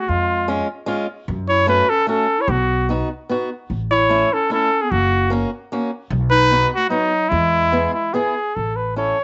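Alpine folk in a festive, bouncy 3/4 dance-band style, this short cut from a longer piece puts a warm trumpet melody with light vibrato up front over a woody, growly pizzicato upright bass and a boxy, fingerpicked swing-style acoustic guitar that joins at 0.5 seconds, while a dark clarinet plays a distant second line in the background until 8.1 seconds, all set in a small room with moderate spring reverb.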